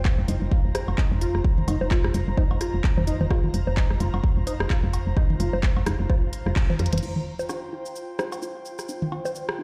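A swung 4/4 groove at 129 BPM drives this sparse, hypnotic minimal techno fragment, built on a punchy, up-front electronic kick, a clicky drum kit of hi-hat, cabasa, handclaps and crash cymbal that sounds re-recorded in a small room, and a booming, tape-warm analog drum machine playing bongos, cowbell, rim click and toms through tape echo. A round, woody FM bass pumps against the kick on an Fsus4 chord, while a juicy, squelchy pluck riff with a resonant filter sweep, phaser, lush chorus and digital delay blips over an airy, breathy, slow-attack pad. A band accent at 6.6 seconds and a drum fill lead to a shift to F5 at 7.0 seconds, where the bass drops out, the kick having already fallen away just before. It is all set in a large studio reverb as if played on a big sound system in a bare room.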